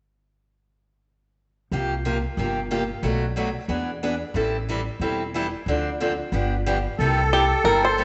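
Lively and playful, this short cut of acoustic string swing in the jazz manouche style moves at a brisk 182 BPM in 4/4, with a swung eighth-note feel. From 1.7 seconds, a boxy parlour-sized steel-string acoustic guitar carries the accompaniment, its fresh strings sounding crisp and picked up front, with an audible finger squeak. Beneath it, a pizzicato upright bass on gut strings gives a woody, thumpy, dark low end, lightly coloured by tube saturation. The chords run C7sus4, Bm7, E7, Am7, Dm7 and G7, arriving at C7 as a new section opens with a reedy musette accordion at 7.0 seconds, its shimmering tuning placed up front as a second line. At 7.3 seconds a twangy, percussive banjo played with fingerpicks takes the melody, bright and forward. A wet echo-chamber reverb with a long 2.1-second tail surrounds the group, and the top end is rolled off above 8 kHz.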